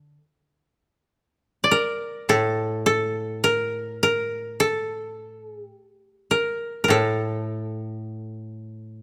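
Close, detailed microphones and light reverb give this short passage of Japanese chamber music an intimate, clear sound, with both koto parts sitting dry, woody and up front under fingerpicks. The mood is austere and calm, moving freely in rubato around 52 BPM in 4/4. A low koto accompaniment plays throughout, and a second koto enters with the melody in its upper range at 1.6 seconds, standing a little louder than its partner.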